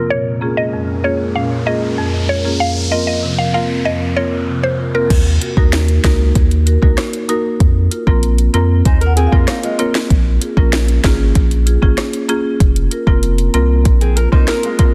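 Dancehall with a tough, hypnotic feel, opening on a woody marimba, a breathy pad in the background, a round, mellow synth pluck melody with tape echo and a downlifter noise sweep, before a deep sub bass and an up-front afro-pop drum kit with a sharp snare and metallic hats arrive at 5.1 seconds, as a dark, boxy fingerpicked acoustic guitar adds brief arpeggios in this dense, heavily limited excerpt.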